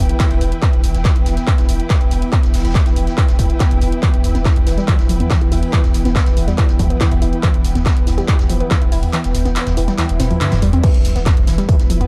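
A dark, warm mix set in a small room opens this hypnotic, industrial slice of driving peak-time techno at 141 BPM in E minor, cut from a longer piece. An overdriven, distorted electronic kick sits up front over a deep, saturated sine sub bass around E1, with a filtered, pumping low end that pulses under a sidechain. A layered techno kit of hi-hat, handclaps, toms and crash adds grit, while a very quiet, distant brush kit of snare and hi-hat sits far back with a rolled-off top. An evolving sawtooth drone with pulse-width modulation and a lush, bowed symphonic string section with vibrato and portamento hold the E minor harmony, and at 4.0 seconds a warbling, lo-fi pluck enters with ring modulation, chorus and digital delay. The kick drops out at 9.1 seconds, and from 10.1 seconds a quiet electronic swell and a drum fill build toward a drop and impact at 10.8 seconds, where the harmony shifts to an E5 chord.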